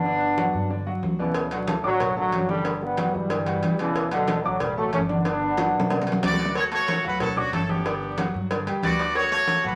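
Salsa with a sunny, joyful lift, this slice of a longer piece opens on a bright, punchy trombone section carrying the melody up front with light vibrato and a smooth top, over a clear grand piano with a vintage character and long sustain. Beneath them, pizzicato upright bass on gut strings sounds woody, dark and thumpy, while ringing, medium-tuned congas play from the start. Round, low-tuned cowbell and bongos struck with hard hands join at 1.3 seconds. A drum fill at 5.6 seconds leads into a new section, and at 6.2 seconds a brilliant horn section with vibrato takes over the melody in a higher register, punchy and up front. The chords move between Gmaj7 and D, later shifting to Dmaj7, all set in a wet studio reverb with a layer of vinyl crackle.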